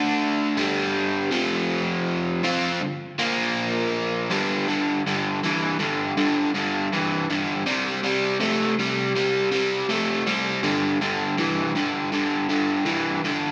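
A lone overdriven electric guitar opens on a D5 power chord and carries this gritty, smoky rock passage on its own, moving through G5, F5 and Bb5 at a slow 80 BPM in G minor. The bright, picked guitar is double-tracked and sits up front, and a shift at 4.7 seconds brings a new stretch built around C5 and G5. A wet recital-hall reverb gives the cut from a longer piece a big arena sound.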